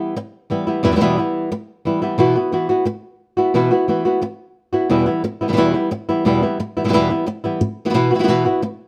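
A straight, even 4/4 pulse drives this brief flamenco passage, which is cut from a longer piece. A lone acoustic flamenco guitar carries everything, fingerpicked and placed up front, with a dark tone that suits the mournful, passionate mood. Its lines reach from the low E2 up to F#4, and the harmony rocks between Em and Bsus4, moving to Bsus4 at 2.2 seconds and again at 7.6 seconds. The guitar plays until 8.7 seconds, and the passage ends shortly after. Close, detailed microphones capture the instrument intimately, with light reverb adding a touch of space around it.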